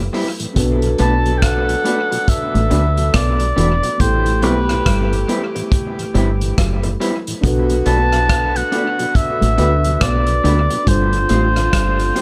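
Lovers rock reggae with a bittersweet, smooth mood, cut from a longer piece, where an up-front oboe with light vibrato carries the melody from 1.0 s through tape echo over a round, punchy dub bass and a vintage drum kit of hi-hat, tight kick and rim click with gated reverb, while a slightly broken-up lo-fi guitar stabs through dub echo, a dark fingered guitar riff sits in the background with its own dub echo, and a mellow tine electric piano, a very quiet tonewheel organ on slow rotary, and a clear, tight saxophone section playing a second line fill out the Am9, Bm7 and G7sus4 harmony in a small room.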